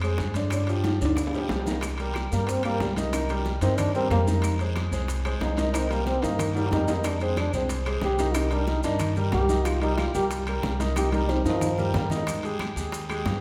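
Afro-Cuban jazz, driving and sophisticated, where a brilliant, up-front upright piano and a thumpy pizzicato upright bass sit over high-tuned congas, ringing, saturated timbales, woody claves, raspy guiro, grainy maracas and very quiet, round bongos, while a mellow trombone enters at 2.3 s for a breathy solo with vibrato and scooped notes inside a reverberant recital hall.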